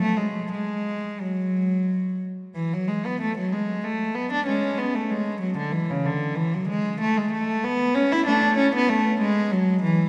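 A long, wet church reverb surrounds a single bowed cello placed close and up front, its gut-string tone rich and reedy in a period style. This flowing, serene fragment of a baroque-style suite movement for unaccompanied cello moves in a rubato triple metre, with the lone player sounding from the first moment to the last at 10.1 seconds. The line stays between C#3 and E4 as one phrase returns in a new statement at 2.5 seconds.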